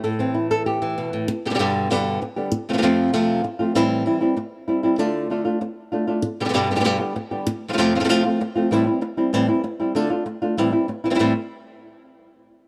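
Flamenco in A minor, this short excerpt cut from a longer piece moves at a brisk 194 BPM in a straight 4/4, with a dramatic, intense mood. A single flamenco guitar carries everything as a solo, playing from 0.0 to 11.3 seconds across a range from F2 to A4. Its acoustic, thumb-plucked tone sits up front, caught by close, detailed microphones with a light touch of reverb. After an opening on an A5 chord, the harmony cycles through G, F, Am7 and Dm, repeating before settling back on Am7 near 10.6 seconds. The tuning sits slightly sharp of standard, at A4 = 441 Hz.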